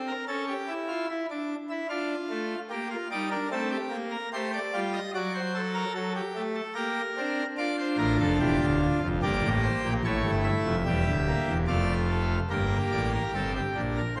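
A pipe organ on full organ, with bright mixtures, audible chiff and baroque voicing, sits up front in this majestic, solemn baroque-style four-part fugue in G minor. At 74 BPM in 3/4, the driving music spans from D1 up to E5 and moves through chords such as A7/C#, Dm, Am7b5 and D7/F#, settling on Gm at 12.5 seconds as a new section begins. The solo organ rings in a reverberant concert hall, and the 14.2-second passage is cut from a longer piece.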